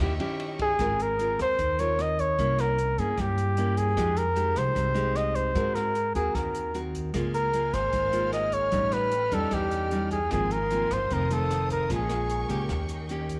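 Fingerpicked nylon-string guitar with audible finger squeak, woody pizzicato upright bass, a smooth jazz kit with a boomy kick and dark cymbals, and a brief touch of lush bowed violins open this breezy, sunny bossa nova in Ab major at 151 BPM; a close-miked, up-front flugelhorn carries the jazz-style melody from 0.6 seconds over richly extended chords, the violin section returning with vibrato in the background from 7.2 seconds, and the whole excerpt sits in moderate plate reverb and small room ambience.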